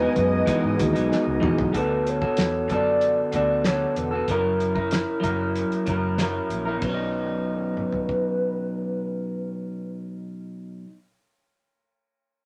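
Indie and bedroom pop at 95 BPM in B major, hazy and laid-back, this excerpt sets a hollow, woody clarinet-like synth lead with chorus over an up-front, slightly broken-up electric guitar with vibrato, a round, foam-muted electric bass and a cloth-damped, thuddy drum kit with a fat snare and dark cymbals, while a mellow tine electric piano and a thick, warbling unison pad sound only in the opening 1.8 seconds, a drum fill arrives at 1.1 seconds, the drums stop at 8.2 seconds, the chords move from Emaj7 through D6 and F#7 to Badd9, and a wet studio reverb covers the mix.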